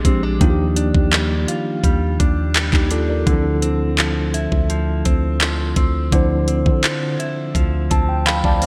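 A straight 4/4 groove at 84 BPM opens this moody, sensual contemporary R&B excerpt, carried by an up-front, electronic drum kit of knocking kick, tape-warm hi-hat and handclaps dressed in gated reverb, over a deep, sine-toned 808-style bass with a fast attack and long decay. A mellow tine electric piano, clean and heard through its built-in speakers, comps on Ebmaj9 and Dm9 chords while a direct-recorded, compressed clean electric guitar plays picked arpeggios through subtle chorus and digital delay. The bright 1980s-style digital production sits in light reverb, and the electric piano adds a fill from 7.6 seconds to the end at 8.7 seconds.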